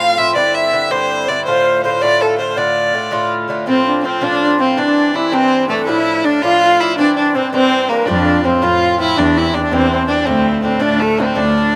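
A rich, focused fiddle with light vibrato carries the melody of this spirited, driving Celtic jig in D minor at 109 BPM, joined by a breathy concert flute's soft-attack second line in the background and an up-front, metallic picked Irish bouzouki, both touched with slapback echo, while a dark, veiled muted cello bass with portamento enters at 8.1 seconds in this dry, outdoor-sounding clip cut from a longer piece.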